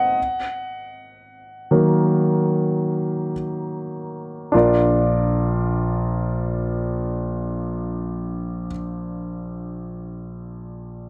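Longing and melancholic, this brief pop excerpt in free time features a clear, intimate concert grand piano heard up front with deep bass, long sustain and audible action noise, playing alone and slowing down over the first 4.5 seconds on an E-flat minor chord before moving to B-flat, all captured in a dry, close 1970s-style studio sound with light reverb.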